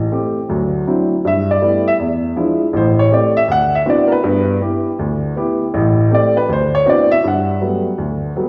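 A woody, natural-sounding upright piano plays up front as the only instrument in this playful, relaxed solo jazz passage in G major, swinging at 160 BPM across a range from A1 to F#5, its long sustain blooming into a recital-hall reverb as it moves through rich harmonies like D9, E7b9 and D13 before settling on Gmaj9 at 7.2 seconds.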